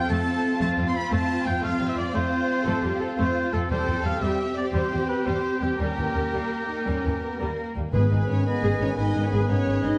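A dark, warm concert-hall sound with moderate reverb frames this 10-second excerpt of a heroic adventure film score, moving at 116 BPM in a straight 12/8 with an adventurous, determined mood. Two rich violin sections carry the melody and a second line alongside a light-vibrato oboe, over intense violas, smooth cellos and up-front, expressive double basses, while hard-mallet timpani strike at 3.7 and 7.9 seconds. At 7.9 seconds, as the harmony turns to G#m, mellow French horns and a very quiet, clear trombone section add sustained chords, with a bright clarinet and an airy, distant flute joining in the background.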